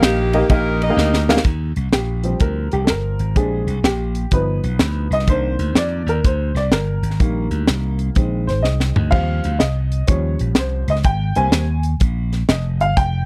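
A worn, woody upright piano, slightly detuned and short in sustain, carries this uplifting, reverent uptempo gospel clip, taking a solo from 1.4 seconds to the end over a swung 4/4 groove and rich, extended chords. Before that, a saxophone section with a soft attack, vibrato and a jazz-style ensemble sound states the melody in the opening 1.4 seconds only. Underneath, an electric slap bass, bright and amped and up front, holds down the low end throughout. A crisp fusion drum kit with a high-tuned snare, a punchy kick, hi-hat, ride, crash and toms drives the piece, adding fills at 1.0 and 8.6 seconds. The overall sound is dry and close, in the manner of a 1970s studio recording, while the drums keep an airy, polished studio-room character.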